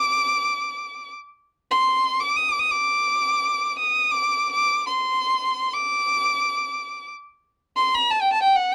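In free time, this short fragment of Turkish makam ensemble music in D makam hicaz carries a passionate, warm mood. A single bowed violin plays solo from 0.0 to 8.7 seconds, rich and focused with vibrato and a smooth top, sitting up front in the high register. The production is dark and warm, with light reverb around the violin.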